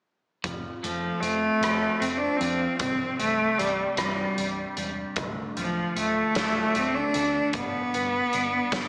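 Quiet-loud alternative rock in a straight 6/8 with a cathartic, bittersweet mood, this short excerpt moves through F, C5, Dm and G as a clean, twangy twelve-string electric guitar plays compressed arpeggios in the background, colored by phaser, slapback echo and analog delay. A round, amped hollow-body electric bass and a big acoustic rock kit with a dark, smooth tone, punchy kick, snare, hi-hat and rim clicks come in with the guitar at 0.4 seconds. At 0.8 seconds a single bowed cello takes the melody up front, bright, biting and intense with vibrato, all set in a wet concert-hall reverb that gives a big arena sound alongside a small-speaker sound.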